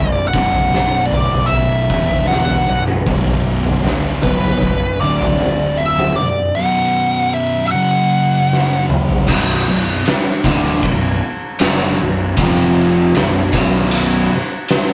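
A rough rehearsal-room recording with light reverb and a dulled top end carries this hypnotic, sludgy stoner and doom metal excerpt at 77 BPM in B minor, built on a slow 4/4 around B5, E5, D5 and F#5. Two thick, dark fuzz guitars grind out the low riff over a growly fingered bass and an oversized, low-tuned drum kit with a punchy kick, fat snare and dark cymbals, while an up-front fuzz lead guitar with wah and distortion sings a melody until 8.9 seconds. After a drum fill, a brighter, double-tracked overdriven guitar takes up the riff at 9.3 seconds as the chords shift through Bm and F5.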